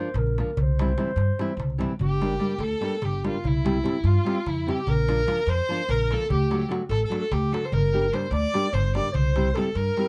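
Close, detailed microphones and light reverb frame this wild, exuberant Balkan wedding-band folk at 294 BPM in 7/8 and C mixolydian, where a dark, roomy clarinet carries the melody over fingerpicked nylon-string guitar and woody, thumpy pizzicato upright bass, a crisp metal-shell darbuka provides the percussion, and a clear bowed violin with vibrato joins on a second line at 2.0 seconds.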